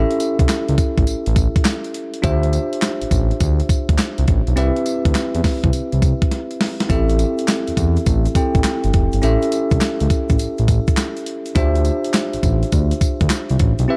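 A bell-like tine electric piano and a smooth, mellow synth bass open this bouncy, punchy new jack swing excerpt in A minor at 103 BPM, with a clean 12-bit drum machine's thumpy kick, medium-tuned snare, handclaps, hi-hat and tambourine swinging the sixteenths up front from 0.1 seconds. The chords move through A7, Dm11, Cmaj7 and Am7, and after a drum fill at 6.3 seconds a grainy, very quiet tube shaker joins at 6.9 seconds. Digital ambience surrounds the dark, warm production.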